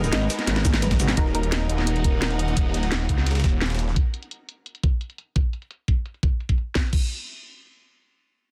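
Dark technical drum and bass with a mechanical, futuristic mood, cut from a longer piece. It opens on a drop with a drum fill: a growling, thick FM bass sits up front beneath a very quiet, evolving resonant pad and a distant, lush string section, while a soft, round pluck plays arpeggios with chorus and dub echo in the background. A knocking electronic kick enters at 0.6 seconds, joining an up-front drum and bass kit of cracking snare, bright hats, shaker, toms and crash, with a gritty, pitched-up breakbeat kit tucked behind. At 1.2 seconds a muted, deep dub chord stab flickers briefly as the FM bass gives way to a snarling, distorted saw bass with a moving notch, pumping against the kick. After the chords drop out at 4.0 seconds, the kick and main kit carry on, the sound dense and heavily limited in a digital ambience.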